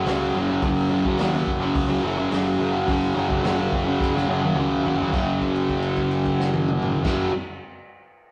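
A straight, rowdy 4/4 garage rock swagger drives this short cut from a longer piece, led by an up-front, double-tracked fuzz guitar riff that sounds bright, compressed and distorted. A growling, overdriven picked electric bass sits in the background, while a vintage acoustic drum kit with a punchy kick, medium-tuned snare, toms and dark, rolled-off cymbals plays a fill from 4.0 to 5.1 seconds before a held note carries on until 7.0 seconds. A wet stone-room reverb and the rough character of a cassette rehearsal-room recording give it a raw, live-in-the-garage feel.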